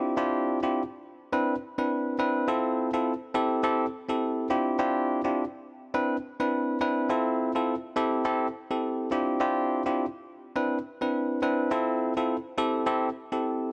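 An afrobeats groove at 104 BPM in 4/4, with a 58% swing on the sixteenths, sets a mellow, sultry mood in A minor, tuned slightly low to A4 = 435 Hz. A lone tine electric piano, bell-like, bright, clean and up front, plays across the middle register from C4 to B4 for the full 13.7 seconds, cycling through Dm11, Cmaj9, Fmaj7 and Am7 with a brief opening passage giving way to a new section at 1.3 seconds. Light reverb and a digital ambience surround this short passage cut from a longer piece.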